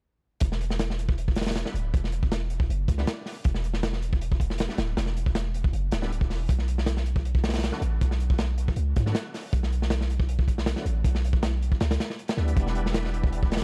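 A crunchy, saturated breakbeat kit of tight kick, medium-tuned snare and hi-hat sits up front with a rolled-off top beside a deep, long, sine-toned 808-style bass in this nostalgic, atmospheric drum and bass and jungle excerpt at 158 BPM in E dorian, while a bright, shouting tonewheel organ with key click, chorus vibrato, slow rotary speaker, 12-bit sampler grit and dub echo adds stabs from 1.7 seconds over Em7 and Bm7 chords in a dark, dry production.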